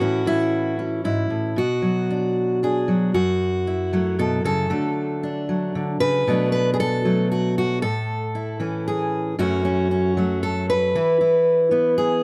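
A fingerpicked steel-string acoustic guitar plays alone and up front, its fresh strings ringing warm with an occasional finger squeak, in an intimate, melancholic folk piece at 116 BPM in a straight 3/4, in B dorian tuned to A4 = 439 Hz. It moves from A to Bm, then at 3.1 seconds a new passage opens with F#m7, D, Bm7, A and F#m before settling on E at 10.9 seconds. Light reverb surrounds the auditorium-style guitar in this short fragment of a longer piece.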